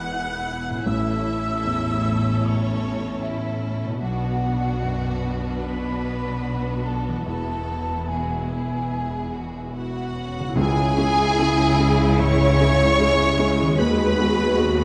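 Rubato at 75 BPM in 4/4, this longing, sorrowful cinematic film-score excerpt sets a distant violin section melody over a clear second violin line and airy flutes, with a felt-muted upright piano, lush violas and ringing harp arpeggios in the accompaniment and bowed cellos and double basses beneath, before a mellow solo clarinet joins at 9.8 s and, as the music turns to C# minor at 10.6 s, a very quiet French horn section holds sustained chords and calf-head timpani enter, all within a moderate scoring-stage reverb.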